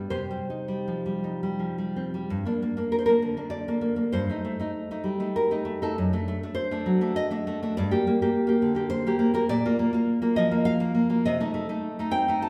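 In a rubato 3/4 at 80-104 BPM, this melancholic, passionate romantic piece for solo classical guitar in G minor sets a fingerpicked nylon-string guitar, deep and up front, inside a wet recital-hall reverb, moving from a brief opening on Cm into a longer passage from 2.3 s that winds through Gm, D7/F# and Bb before this fragment of a longer work halts on Adim/C.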